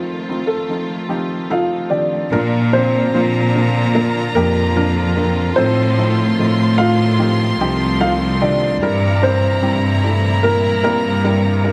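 A dark, mellow baby grand carries the melody with a touch of delay over a soft, felt-muted upright piano and a distant, lush string section in this emotional pop ballad fragment at 74 BPM in Bb major, until at 2.3 seconds a warm, intimate chamber violin section adds a high second line and an up-front, intense cello section enters on the bass, all set in a moderate recital hall reverb.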